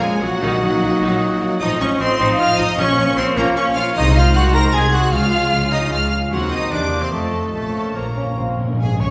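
Cut from a longer, stormy and dramatic classical piece in a rubato triple metre, this passage opens with a lush, focused studio violin section carrying the melody over an airy, hollow flute, a distant cor anglais and a softer chamber violin section on second lines, while dark, hushed French horns and smooth-topped trombones sustain chords, a bright, ringing harp fingerpicks arpeggios, tight, roomy trumpets add stabs, soft-attack cellos and clear double basses hold the bass beneath faint violas, round soft-mallet timpani enter at 0.4 seconds and return with a fill at 7.5 seconds, and a mellow solo bassoon joins at 8.0 seconds, the ensemble set in a wet recital-hall ambience.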